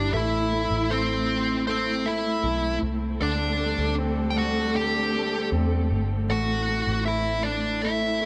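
A heartfelt, tender pop passage opens with the full band together: an overdriven, dark lead guitar sings the melody up front over a smooth, lush bowed string section with vibrato and portamento. Beneath them a clear, intimate grand piano sits in the background with audible action noise, while a foam-muted, round and punchy fingered electric bass anchors the low end. The chords move from Am to D7sus4 and back to Am around 6.3 seconds, all heard as a live band in a moderately reverberant stone room in this short cut from a longer piece.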